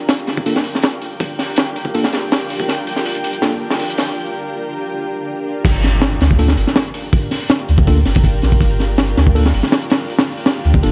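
A cloudy, evolving granular pad holds a Gm7 chord from the very start, joined almost at once by a crunchy, saturated breakbeat kit with a high-tuned snare, tight kick and dark cymbals, while a reversed, dreamy swell drifts in the background and a mellow tine electric piano with 12-bit grit and dub echo adds stabs under a filter sweep. This dark, frenetic drum and bass excerpt at 162 BPM in G minor builds through a drum fill and a short break before the drop at 5.6 seconds, where a deep, round sub bass enters beside a very quiet electronic impact. Vinyl crackle and light studio ambience sit around the whole piece, with the up-front drums and sub carrying the weight as the electric piano returns at 6.4 seconds.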